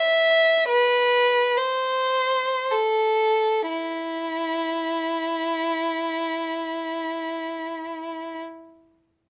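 A lone violin opens this brief classical fragment, singing a lyrical, nostalgic line in a free, expressive manner that slows down over its first 3.7 seconds. The single bowed player sits up front, with a warm, focused tone, vibrato and a smooth top, moving between E4 and E5 in a 6/8 shaped by generous rubato. At 3.7 seconds the music turns to a second phrase that carries on until the violin stops at 8.4 seconds, cut from a longer piece. Close, detailed microphones capture the instrument intimately, while a light reverb lends the room a gentle glow.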